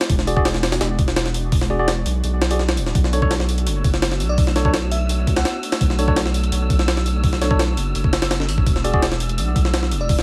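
Raw and dark, this drum and bass excerpt in a jungle vein rides on a gritty, sampler-style kit that sits up front, pitched up and compressed, with a thumpy kick, a high-tuned snare and hi-hat, all carrying a tape-warm tone in a small room. A deep, thick, saturated sub bass holds the low end just as prominently, while a bright, clean electric piano punches out stabs trailed by dub echo. Behind them, an ethereal, warbling pad of detuned vintage synths sustains mellow chords through ensemble chorus and reverb as the harmony moves from E7 to Bm7 and back. The kick drops out from 2.2 to 3.0 seconds, and a breathy, wind-like noise texture drifts in around 3.5 seconds, softly reverberant in the background. At 4.3 seconds a bell-like, sparkling FM electric piano offers a brief melody, colored by chorus, phaser and dub echo, all over a bed of vinyl crackle.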